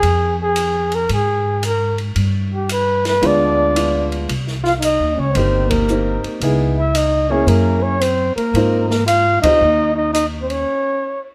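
A relaxed 4/4 swing at 113 BPM, with eighth notes swung, sets up this sophisticated small-group jazz excerpt in Ab major, cut from a longer piece and tuned slightly low. Upright bass, plucked and woody with steel strings, sits up front beside an open acoustic drum kit of hi-hat, ride, snare and boomy kick, its cymbals dark and its small-room sound natural. A breathy flugelhorn carries the melody from the start, mellow and whispered with vibrato and a soft attack, intimate and close, wrapped in plate reverb. At 3.2 seconds a punchy, forceful trombone joins on a second line with scooped notes, while an upright piano enters to accompany with a woody tone and long sustain until 9.6 seconds. The harmony moves from Fm through G7b9 and Cm7 to Dbm7, Gb9 and a resolving Ab69, the band hitting accents together along the way before a brief break at 10.7 seconds, all set in a moderate studio reverb.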